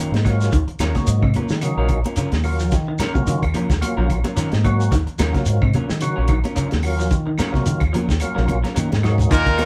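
An envelope-filtered fingered electric bass anchors this funky, intense afrobeat groove in Eb minor at 109 BPM, sitting over an up-front, muffled soul drum kit with a tight kick, alongside high-tuned congas with hard hands, grainy shekere and distant woody claves. Two clean semi-hollow electric guitars share the harmony on a single Ebm9 chord, one picking arpeggios in the background while the other, fingered and bathed in spring reverb, plays stabs, and a fat, lightly overdriven tonewheel organ with key click, chorus vibrato and a slow rotary speaker fills in the accompaniment. After a drum fill from 8.5 s, a punchy horn section enters at 9.3 s with a raspy baritone saxophone and a plunger-muted, wah-wah trombone, all captured live in a small room in this cut from a longer piece.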